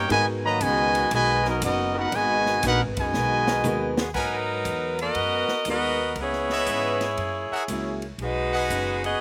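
Sultry and dramatic, this big band swing excerpt opens with a clear, up-front trumpet section carrying the melody with slapback echo over a clear trombone section, growly pizzicato upright bass, woody upright piano, a very quiet boxy picked acoustic guitar and a swinging drum kit with dark cymbals, then after a drum fill at 3.1 seconds an edgy saxophone section takes the melody at 4.2 seconds as a brilliant trumpet section punches out stabs.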